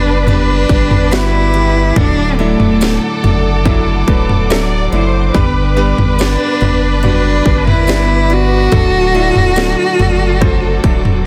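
A dense, heavily limited modern studio sound with reverb frames this tender, heartfelt pop ballad fragment, where an up-front bowed cello sings the nasal, focused melody with vibrato over a lush, distant violin section gliding with portamento, a clear concert grand piano with short sustain, a veiled, muted string section holding dark chords in the background, quiet bright arpeggios from a picked jumbo acoustic guitar, a round sine sub bass, a punchy, layered electronic drum kit with cracking snare and toms entering at 0.3 seconds, and a jingly tambourine tucked behind from 1.1 to 9.8 seconds.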